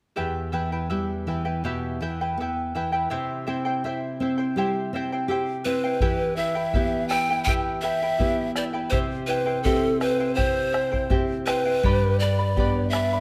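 A straight 4/4 pulse at 82 BPM carries this festive, earthy Andean folk excerpt in E minor, where a shimmering fingerpicked charango and a full-bodied nylon-string guitar open together at 0.2 s over Em and C, a breathy bamboo pan flute with vibrato and tongued chiff takes the melody up front from 5.6 s, and a deep, dark bombo sounds close and dry from 6.0 s as the harmony moves through Em, C and G in a moderate stage reverb.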